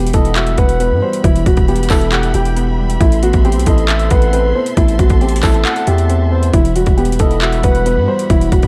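A half-time trap groove drives this brooding, melancholic hip hop fragment: an overdriven drum kit of hard-clipped kick, metallic hi-hats and handclaps sits up front beside a heavy, distorted 808-style bass, while a dark, intimate baby grand piano carries the melody through digital delay over warbling, detuned lo-fi synth keys, expressive bowed strings with vibrato, and a breathy flute-like synth lead in the background that stops at 7.8 seconds, in a dry, dark production.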